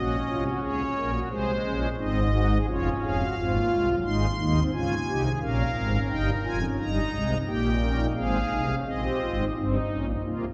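A wet church reverb with a 3.5-second decay surrounds this short classical passage, heard from further back in the room, while the pipe organ's shimmering string and celeste stops still sit up front with a soft, romantic voicing. It is a contemplative yet driving baroque-style four-part fugue in 4/4 at 88 BPM, tuned to A4 = 438 Hz, with the solo organ spanning F1 to C6 for the full 10.5 seconds. The harmony moves from Ebm7/Bb through Ab, Db/F and Bbm7 before settling on Eb/G at 9.5 seconds, shortly before this excerpt, cut from a longer piece, comes to its end.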